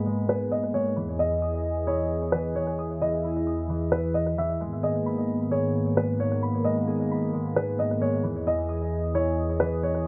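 Spacious and ethereal, this hip hop excerpt moves at 132 BPM in 4/4 with a relaxed half-time feel, drifting between G#madd9 and Emaj7 chords. A felt-muted upright piano sits up front with a soft, mellow, intimate melody between B4 and E5, its thin felt tone trailed by delay. Alongside it, a warm analog pad, also up front, holds sustained chords with a slow attack, its detuned sawtooth and triangle layers made smooth by chorus. A concert harp adds quieter fingerpicked arpeggios that ring out with delay of their own. The dark, warm production runs through a low-pass filter with a filter sweep across the whole passage, set in a short, moderate booth ambience.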